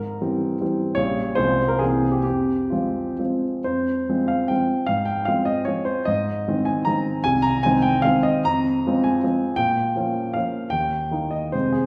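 Heard in a wet recital hall with a 1.7-second reverb tail, a polished baby grand piano sits present and up front, playing solo through this short cut from a longer romantic classical piece. It is a rustic yet graceful triple-time dance in 3/4, built on dotted rhythms and shaped with free rubato across a range from Bb1 to Bb5. A brief opening phrase gives way at 3.7 seconds to a second, longer section that carries on to 11.9 seconds.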